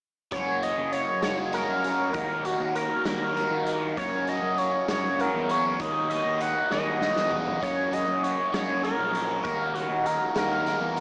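Psychedelic rock in a straight 6/8, trippy and hypnotic, with a tearing, sawtooth sync lead carrying the melody up front, its chorus, vibrato and tape echo drifting over a bright, double-tracked overdriven guitar riff tinted by phaser. Underneath, a round, fuzzed picked bass and a gritty, saturated garage drum kit with a punchy kick hold the groove, the drums breaking into a fill at 6.7 seconds as the harmony rocks between F# and D#m. The whole mix is soaked in a huge ambient reverb yet has a small-speaker sound, giving this cut from a longer piece a dreamy, faraway haze.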